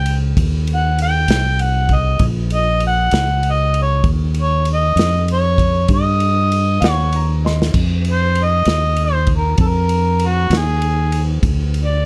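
Set in a straight 12/8 lilt, this laid-back, soulful slow blues fragment puts a mellow, overdriven harmonica with soft, scooped notes up front as the jazz-style lead, over fingered electric bass and a small-room soul drum kit with dark cymbals and a punchy kick, while a woody upright piano adds a brief second line from 6.8 to 7.9 seconds around a drum fill, in a dark, dry production.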